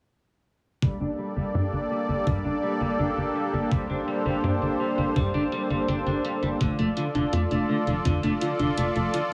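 Synthwave at 83 BPM in G minor, nostalgic and nocturnal, this excerpt sets a soft, smooth supersaw holding sustained chords with sidechain pumping over a tight, punchy sequencer bass, a thumpy overdriven electronic kick and a quiet overdriven hi-hat, while a clean picked electric guitar plays a riff through lush chorus and diffuse ambient delay. Filter sweeps move across the drums, bass and guitar, and at 6.6 seconds, as the harmony shifts from Gmadd9 to Dm/F, a round, tine-like thumb-piano-style pluck joins with gentle arpeggios. The dreamy mix is soaked in plate reverb, and the kick stops at 8.2 seconds.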